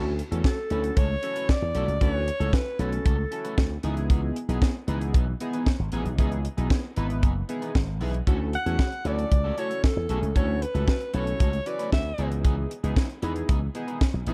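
A glossy, retro chorused polysynth, a dark, slightly broken-up electric guitar riff drenched in lush chorus, and a growly, up-front slap bass through an envelope filter open this slick, funky excerpt of early-eighties boogie funk, with a dry, tight drum kit and its high-tuned snare arriving at 0.2 seconds and an intimate, breathy alto saxophone carrying a whispered, vibrato-laced melody with scooped notes in two phrases from 0.5 and 8.6 seconds over Dmaj7 and C#m9 chords in a small-room mix.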